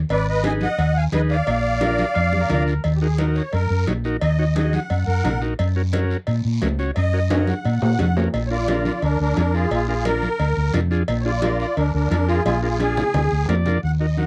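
A straight four-beat cumbia groove drives this fiery fragment, cut from a longer piece. A dark, round hollow-body electric bass sits up front beside a reedy, shimmering musette accordion carrying the melody. Hard-hand congas and a raspy guiro sit in the background, joined by a ringing cowbell and timbales, all with a vintage, band-limited character. A combo organ with light vibrato fills out the harmony, and a twangy, clean picked electric guitar adds a brief second line between 2.2 and 2.8 seconds. From 2.8 seconds the accordion takes an airy solo over chords moving from Eb minor to Gb and Bb7, punctuated by drum fills and a short transistor organ fill just before 13.8 seconds. The sound is dry and close, like a 1970s studio session.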